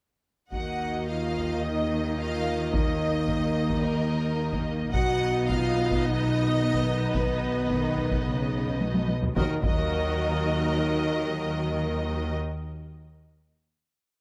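Close, detailed microphones and light reverb frame this dark, dramatic orchestral film cue, a complete piece whose theme settles onto a final held chord at 9.4 seconds. A distant, lush first violin section sustains the top line with vibrato while a second violin section with a smooth top doubles the tune at the octave. Bowed violas fill in the harmony, a mellow French horn section holds chords in the background while very quiet, close-miked trombones sustain slow swelling chords, and woody cellos answer at phrase ends over a double bass section with soft attack and expressive portamento, as a taiko ensemble pounds a heavy-stick ostinato in a live room and drops out at 10.4 seconds after a fill.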